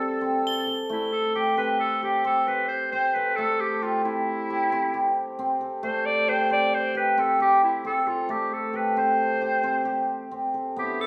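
Set in a lopsided 11/8 with a straight feel, this short cut from a longer contemporary chamber piece feels hypnotic yet urgent. A hammered, shimmering cimbalom sits up front and plays ringing arpeggios the whole way through, giving the music its restless pulse. Above it, a clear solo clarinet carries the melody with vibrato and scooped notes in a jazz-tinged style, its tone roomy and set forward. A warm woodwind section holds sustained chords with light vibrato, in a classical manner, for only the opening moments until 0.9 seconds and returns at 10.8 seconds. Bright, bell-like crotales add a high, dry glint near the start at 0.5 seconds and again at the very end. The players sound as though they are in a church or concert hall, with a generous recital-hall reverb around them.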